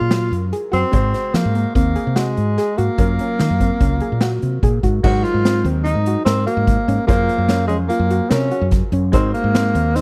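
A straight 5/4 pulse at 146 BPM drives this intricate, tense progressive instrumental excerpt, where a breathy tenor saxophone carries the melody with light vibrato and scooped notes over a woody fretless bass, a street-band drum kit entering at 0.1 s with a boomy kick and dark cymbals, a soft round pluck arpeggiating through chorus, and a bright concert grand piano in the background, all captured as a dry, close 1970s-style studio recording moving from Gbmaj7 and Ab7 toward Gbmaj9#11 and Ab9.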